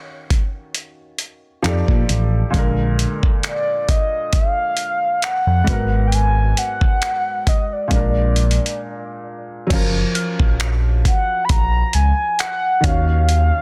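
A mellow, horn-like synth lead carries the melody from the first moment over a soft, felt-muted upright piano whose action noise gives the accompaniment an intimate feel, setting a moody, sensual contemporary R&B groove at 67 BPM with a light 16th-note swing. The dusty, sampler-style drum kit comes in at 0.3 seconds, up front and gritty, with a thumpy kick, hi-hat, finger snaps, crash cymbal and a softly clipped snare that sounds re-recorded in a small room. A smooth, dark synth bass with portamento and vibrato enters at 1.6 seconds, sitting prominently under chords that move from Ebm9 through F13, Bb7 and Abm9. The lead has a round, vintage warble with chorus and delay, and a filter sweep shapes its sustained tone. After a brief break at 8.8 seconds, the harmony turns to Gbmaj7, and a woody, mallet-like FM pluck appears in the background at 10.1 seconds, with its own chorus and delay. 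The mix is dry, dense and heavily limited, and this short excerpt is cut from a longer piece.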